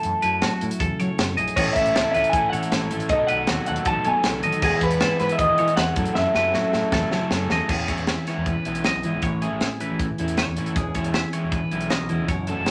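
Over a straight 4/4 pulse from a crisp, airy fusion kit with a high-tuned snare and punchy kick, this playful, intricate math rock and midwest emo excerpt layers a slightly broken-up, lo-fi guitar melody through a small old amp (which stops at 7.3 s), clean picked guitar accompaniment, bright twangy arpeggios, a growling overdriven fingered bass and a double-tracked crunchy guitar riff entering at 1.6 s. The parts move through jazzy seventh, ninth and sixth chords, and a drum fill from 6.2 s leads into a new section, all in a reverberant studio room.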